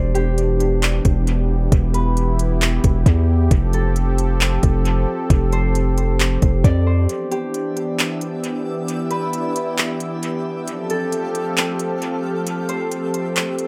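This dreamy, blissful cloud-rap excerpt opens with a bright, ringing Celtic harp melody, fingerpicked through a low-pass filter and analog delay, floating over a detuned sawtooth pad whose smooth, chorused chords pump against the beat. A deep, sine-toned 808-style bass sits up front beneath them, and a soft-kicked electronic R&B kit with crisp hi-hats and handclaps enters almost at once, carrying its own analog delay at 134 BPM in a half-time 4/4 feel. The harmony rocks between Em7 and Fadd9 in F lydian, giving the loop a hazy, suspended quality within an echo-heavy digital ambience. The bass drops out at 7.1 seconds for a break, and at 7.7 seconds a faint granular texture with an octave-up FM shimmer fades in, twinkling through its built-in reverb. From 12.5 seconds the kick falls silent, leaving the hats, claps, harp, pad and granular shimmer to drift until the cut.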